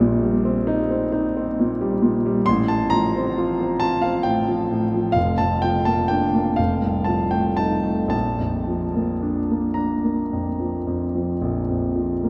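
A solo concert grand piano opens this short excerpt of a serene, dreamy romantic nocturne in Bb major, moving in a slow, rubato 12/8 at around 36-45 BPM in dotted quarters. The piano sounds intimate and up front, with deep bass, a smooth, vintage tone and audible action noise, spanning F1 to C6 as the harmony passes from Cm7/Bb through F/A and Bb/F to F7 before settling on Bb at 8.1 seconds. A wet cathedral reverb with a 5.6-second decay places the instrument in a vast, echoing space.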